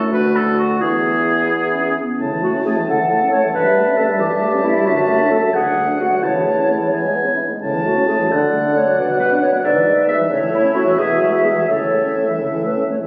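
Quick classical-period movement for wind quintet in A major, cheerful and spirited, moving in a lilting 6/8 at 82-92 dotted-quarter beats per minute with a rubato feel. The clarinet, French horn and bassoon open together as accompaniment, with the oboe joining a moment later as a second line, the mellow clarinet and warm horn set over the bassoon's bass. The flute enters with the melody at 2.9 seconds, its hollow, pure metal tone carrying vibrato and a crisp attack yet sounding distant, while the clear oboe adds light vibrato from a roomy, distant position. The harmony moves through plain classical progressions, passing from D and E to A, touching A7/G, D/F#, Bm and E7/G# before settling back on A. The sound sits in a wet concert-hall reverb with a club-like ambience, heard as if captured on a phone in the room, compressed and dulled at the top end, and this short cut from a longer piece stops at about 13 seconds.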